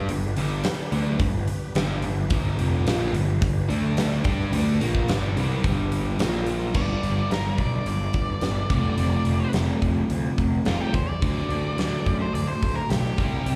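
A gritty, swaggering blues rock and southern rock excerpt in G mixolydian at 108 BPM opens with a crunchy, double-tracked overdriven guitar riff, a growly fuzz-driven picked bass and a very quiet, thick tonewheel organ holding sustained chords through a fast rotary speaker until 6.7 seconds, as a huge arena drum kit with a punchy kick and bright cymbals pushes up front, and at 6.8 seconds a dark octave-fuzz lead guitar with slapback echo takes the melody over G, F and D chords, all heard as a live gig through a club PA with small-room reverb.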